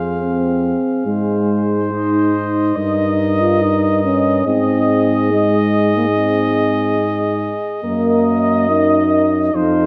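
This classical brass quintet excerpt is grave and solemn, moving at a slow 71 BPM in a straight 4/4. The trumpet carries the melody in a narrow high range with a light vibrato, while the flugelhorn shapes a second line just beneath it, its vibrato tone sounding distant and roomy. The French horn offers a warm accompaniment, and the euphonium, entering at 0.2 seconds, adds a dark, smooth-topped voice that stands out most strongly in the blend. Underneath, the tuba anchors the bass with a soft attack and light vibrato. The harmony moves from F minor through A-flat and E-flat over G, returning to A-flat before darkening to E-flat minor over G-flat at 7.8 seconds, all captured with close, detailed microphones and a light reverb.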